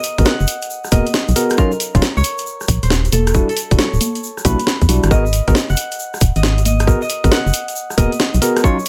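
A bright, ringing concert harp melody with dub echo leads this moody, skippy two-step UK garage excerpt at 136 BPM in G# minor, over a tape-flavoured house kit of congas, hi-hat, rim click and cracking snare, a grainy tube shaker, a tight layered electronic kick, a hollow, dark organ-like FM bass up front, and worn, slightly out-of-tune overdriven tine electric piano stabs moving through G#m9, D#m9 and Em9 in a dry mix.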